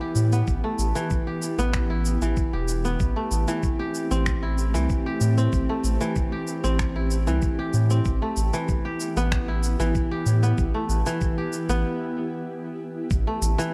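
Earthy and mystical, this organic downtempo piece features a bright, fingerpicked kora playing ringing arpeggios with tape echo, over a cloudy, evolving granular pad that sustains chords in the background with its own reverb and sidechain pumping. A round, deep analog bass, also pumping, sits up front beside a gritty, thumpy electronic kick drum that enters at 0.5 seconds, while an overdriven electronic kit adds cabasa, finger snaps and crisp hats. Light reverb and a dark, warm production shape the sound, and a break arrives at 11.8 seconds.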